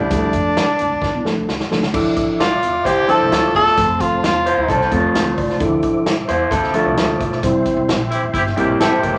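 A breathy, up-front tenor saxophone carries the melody with scooped notes and light vibrato until 4.9 seconds in this urgent, driving excerpt of uptempo 1960s-style soul at 131 BPM in D minor, over a dark, slightly broken-up electric guitar riff, a growly pizzicato upright bass, a reedy electric piano that takes a short fill, and a swinging big-band drum kit with a punchy kick that plays a fill before the organ enters at 1.9 seconds. That soft, flute-like tonewheel organ sits in the background with slow rotary speaker and chorus vibrato, holding sustained chords as the harmony moves from D minor through F to C. A clear, vintage horn section joins at 8.1 seconds with a second line during the closing band accent, all set in a moderate large studio reverb.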